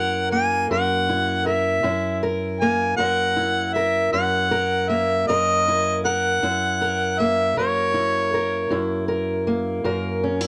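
Swaggering and soulful, this short excerpt of acoustic country blues rolls along in a slow, straight 12/8 over a single F#7 chord. A mellow harmonica carries the melody up front, played in a jazz style with light vibrato, scooped notes, tongue slaps, a soft attack and a smooth top, bathed in plate reverb. Beneath it, a fingerpicked steel-string parlour guitar provides accompaniment, its tone dark and boxy and also placed up front. The harmonica drops out at 9.1 seconds, leaving the guitar to carry on alone until the fragment ends at 10.5 seconds. Light reverb and a dark, warm production round out the duo.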